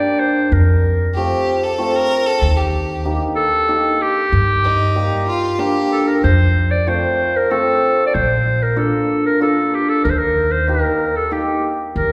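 Heard from further back in a wet recital hall, this festive yet soulful klezmer excerpt in 3/4 at 94 BPM moves through Gm, F, Eb and Bb chords, with a bright, vintage clarinet carrying the classical-style solo melody up front, a shimmering, ringing hammered dulcimer accompanying, a woody pizzicato upright bass entering up front at 0.5 seconds, and a clear, biting bowed violin adding an intense second line with light vibrato from 1.1 to 6.2 seconds.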